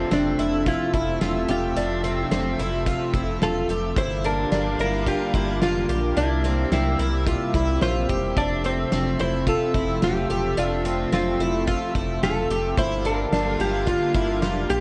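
A clean, compressed hollow-body jazz guitar carries the melody through digital delay in this ethereal, hazy dream pop excerpt, drifting over a shimmering, octave-doubled twelve-string acoustic guitar picking arpeggios, a thick, detuned unison pad holding slow-blooming chords through chorus, a deep sine-like sub bass, and a loose indie drum kit with a fat snare and punchy kick from 0.1 seconds, all bathed in huge ambient reverb and the warbly pitch drift of worn old cassette tape as the harmony moves from Fmaj7 through Gm7 and C7.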